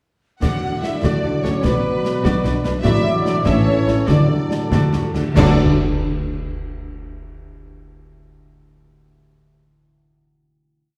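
Heroic and soaring, this short cinematic adventure cue in D major moves in 6/8 at 92-100 BPM, with a clear, intense violin section carrying the melody while a lush, smooth second violin section and an airy flute ensemble double the tune at the octave, over a viola section's driving ostinato, a cello ostinato and a double bass section doubling the bass line. Warm French horns and clear trombones sustain chords as dark, punchy trumpets add stabs in the rhythm of the tune, a very quiet ringing harp spreads broken chords, and a dry marching snare rides over a bass drum on the beat with toms and dark clash cymbals. From 2.8 s timpani single strokes, cymbal swells and crashes join as the theme slows, landing on a band accent and a final chord at 5.4 s, all set back in a wet recital hall.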